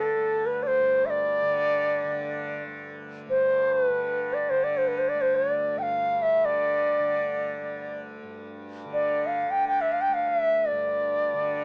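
A bright, reedy bansuri sits close and up front, its pure bamboo tone carrying a vibrato-laden, tongued melody in this meditative, longing slice of Indian classical music in raga Bageshri, cut from a longer performance. Beneath it, a softly plucked tanpura holds a low, buzzing drone with a shimmering glow, its cassette-tinged sound set well back in the mix. The whole fragment has the intimate feel of a home cassette recording in a small booth with a wet ambience, heard through a small speaker.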